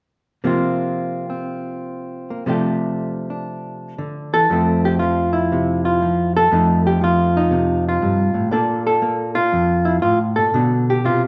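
A dark, clean, fingered hollow-body electric jazz guitar enters at 0.4 s and carries this short solo jazz excerpt alone until 11.3 s, playing in F major at 119 BPM in 4/4 with a swung, rubato feel and spanning F2 to A4. The mood is sophisticated and playful, with the harmony moving from C7sus4 and F69/C through Fmaj7, F9 and Bbmaj7 before ending on Am11/B. The guitar sits up front in the mix, though a large studio's wet reverb places the sound further back in the room.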